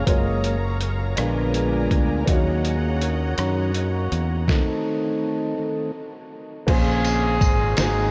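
A mellow, flute-like tonewheel organ takes the lead through slow rotary speaker and key click, over a woody upright piano with lush chorus in the background, a round, dark fingered electric bass, distant bowed strings with vibrato that stop at 4.5 s, and a compressed, pitched-down trip hop drum kit with a thumpy kick. This slow, solemn gospel piece in Bb minor moves in a straight 6/8 at 54 BPM through Gbmaj7, Bb7b9 and Ebm7, and then a stop lands on Adim/Eb. At 6.7 s a warm, smooth horn section enters with the melody through diffuse ambient delay over Bbm9, a jingly tambourine joins at 7.0 s, and the whole dreamy, fervent mix is soaked in huge ambient reverb.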